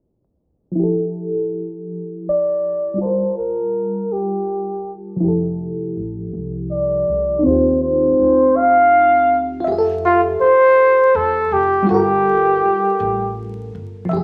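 In a slow, straight 6/8 at 54 BPM, this intimate, tender R&B excerpt in F major opens with a warbling, mellow FM electric piano treated with phaser at 0.7 s, adds a solo flugelhorn melody with light vibrato, scooped notes and a smooth top at 2.3 s, and brings in a quiet, woody, thumpy pizzicato upright bass at 5.2 s, set in a large-studio reverb with vinyl crackle and a filter sweep through the opening section.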